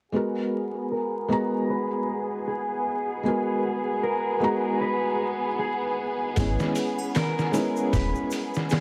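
A felt-muted upright piano sits up front in this smoky, cinematic trip hop excerpt, its soft, intimate accompaniment carrying audible action noise and colored by tremolo and tape echo. Around it, a dark studio violin section holds lush, bowed chords with vibrato and a smooth top under a low-pass filter sweep. Deeper in the mix, a clean, fingered electric guitar plays arpeggios, filtered and echoed. The tune moves at 77 BPM in G# minor with a swung sixteenth-note feel, resting on G#m9 before shifting to E6 at 6.4 s. At that point a gritty, pitched-down, tape-warm sampler-style kit with a thumpy kick and medium-tuned snare arrives along with a faint, dry egg shaker and triangle, both playing until the fragment ends at 8.8 s, while a round, detuned analog bass enters alongside them and drops out at 8.1 s. A moderate echo chamber reverb and a layer of vinyl crackle give the whole piece a hazy, late-night glow.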